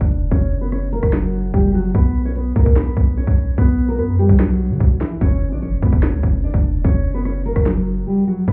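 A thumb-plucked nylon-string guitar carries the melody in this hard-hitting, menacing trap excerpt, its full-bodied, deep classical tone softened by a low-pass filter and marked by audible finger squeak. A filter sweep moves across the guitar over the first 1.9 seconds. Beneath it, a long sustained 808-style bass sits up front with a deep, mellow sine tone, a fast attack and a decaying tail. The electronic trap drum kit is the boldest layer, pairing a hard-clipped kick and sharp snare with metallic hi-hats and rim clicks in a half-time feel. The harmony moves from F#5 to Bsus2 and back to F#5, and the whole mix sounds muffled as if heard through a wall, with light club reverb, before a brief silent gap from 8.1 seconds.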